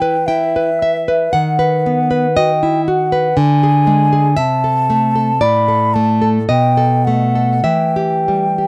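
A fingerpicked nylon-string guitar and a concert flute begin together in this short, elegiac fragment of a romantic duo, cut from a longer piece and lasting about 8.7 seconds. The guitar sits up front, full-bodied, warm and deep with the fresh sound of new strings, and a faint finger squeak can be heard as it carries the accompaniment. Above it, the flute sings a melancholic line in a pure, hollow tone with gentle vibrato and a soft attack. The triple metre moves with a free, rubato feel, and the harmony passes through brief moments where the chords fall away before settling home again. A dry, close studio sound in a 1970s style, touched with light reverb, keeps the two instruments intimate and clear.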